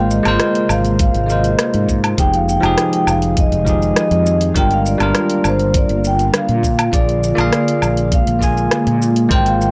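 A warm, wistful sunset chillout excerpt in a straight 4/4, where a ringing, metallic vibraphone with analog delay carries the melody over a bright, up-front bell-like tine electric piano roughened with vintage 12-bit sampler grit, a mellow, ethereal pad with ensemble chorus sitting in the background, a dark, round fretless electric bass, an overdriven deep house kit of hi-hat, rim click, shaker and woodblock, and a knocking electronic kick that enters at 1.0 seconds, all moving through Ab69, Fm9, Gm7 and Bb7 with a gritty hardware sound, transformer saturation and cassette tape character.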